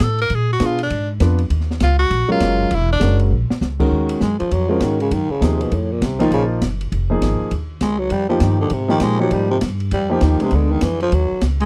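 The recording is dry and close, with the intimate feel of a 1970s studio and little reverb. This moody, smoky stretch of small-group swing and bop, cut from a longer piece, moves at 200 BPM in 4/4 with swung eighth notes. A clear tenor saxophone opens with a short solo line, its light vibrato and scooped notes sitting up front until 3.2 seconds, and a brief drum fill follows from the acoustic kit, whose dark cymbals, high-tuned snare and boomy kick sit lower in the mix. Underneath, a woody, thumpy pizzicato upright bass carries the low end throughout, while a warm grand piano with audible action noise and short sustain comps through shifting minor and extended chords from 0.6 seconds. At 4.2 seconds a growling baritone saxophone takes over the solo, breathy, raspy and gritty with vibrato yet a smooth top, moving over chords such as Ebm9, Eb9 and Ddim7.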